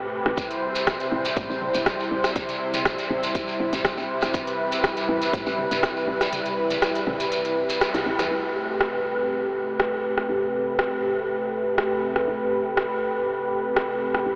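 Driving and earthy, this afro house excerpt sets a bright, detuned sawtooth pad with chorus and sidechain pumping over a woody, round FM bass that also pumps, while an up-front afro-pop kit of crisp hi-hats, rim clicks and toms plays alongside a punchy, layered electronic kick that stops at 5.9 seconds, a grainy, distant shekere plays until 8.3 seconds after a band accent at 7.8 seconds, and the dreamy mix is soaked in a huge ambient reverb with an AM radio tone.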